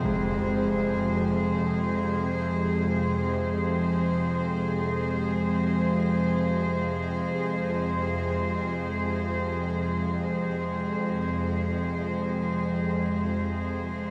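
In free time and held on F minor throughout, this unsettling dark ambient drone, cut from a longer piece and tuned to A4 = 436 Hz, sets a clear, floating symphonic cello section playing sustained chords up front against a tense, detuned, ring-modulated bowed-like drone with a string-like sawtooth edge, vibrato and its own built-in reverb. Behind them a very quiet bronze singing bowl, struck with a wooden striker, adds a dark, metallic ring with slow beating. All three parts sound from 0.0 to 14.1 seconds inside a vast, echoing cathedral reverb with a 6.0-second decay, giving the ominous mood a cavernous depth.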